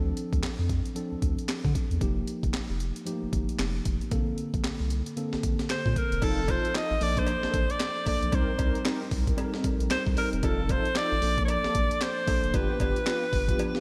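Confident and punchy, this new jack swing R&B excerpt rides a swung groove from a gritty, compressed, sampler-style breakbeat kit with a thumpy kick, medium-tuned snare, handclaps, hi-hat and crash, set up front over a round, deep analog bass sitting in the background and a worn, slightly out-of-tune tine electric piano comping through chords such as Dm7, Bbmaj9 and F7. At 5.7 seconds a bright alto saxophone takes the solo melody with pop-style vibrato, and from 6.2 seconds brassy, detuned synth brass stabs with chorus and a filter sweep join alongside a very quiet, close, metallic cowbell. A lush hall reverb and bright 1980s-style digital sheen frame the track, with a brief electric piano fill at 13.6 seconds.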